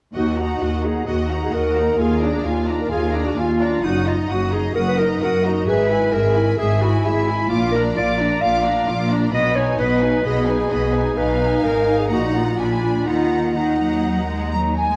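A roomy, distant clarinet stands out in this urgent, dramatic romantic movement for symphony orchestra, carrying a second line through a fast 130 BPM in 4/4 in E-flat minor. Above it, a clear violin section sings the melody with intense vibrato, while a second, closer violin section adds a rich, lush counterline just beneath. A smooth viola section fills the accompaniment, and focused cellos join an even double bass section to anchor the bass. The harmony moves from Ebm through Bb7, Abm and a Fm7b5 before a Bb7b9 pulls back to Ebm at 13.1 seconds, and a hollow concert flute slips in with a brief tongued phrase at 14.5 seconds just as the passage is cut from the longer piece. The whole orchestra sits in a wet scoring-stage reverb, colored by the worn, warbling pitch drift of old cassette tape.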